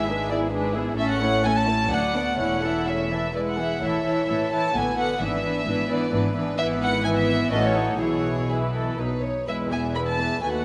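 Spirited and graceful, this short cut from a quick classical-period movement for string orchestra in 3/4 with a rubato feel places an intimate, up-front violin section with light vibrato on the melody above a close second violin line, while floating sul tasto violas accompany and a rich cello section in the background shares the bass with a pure, smooth-topped double bass section, all bowed ensembles sounding in a moderate concert hall reverb.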